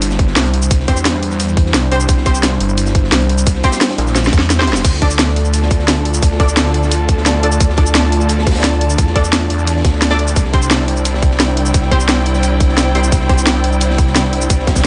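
This dark, tense technical drum and bass piece in D minor at 174 BPM opens with a snarling, distorted detuned-saw bass up front, punchy orchestra-hit-like synth stabs in the background trailing reverb and dub echo, a moody analog pad pumping against the sidechain, a cracking-snare drum and bass kit with crash, hi-hat and shaker, and a very quiet, gritty breakbeat kit underneath; a tight electronic kick joins at 0.2 seconds, and after a drum fill from 4.2 seconds a lush, bowed symphonic string section with vibrato enters at 4.8 seconds over chords moving from Cadd9 to Dm and back, all in a small, lightly reverberant room with a rolled-off top.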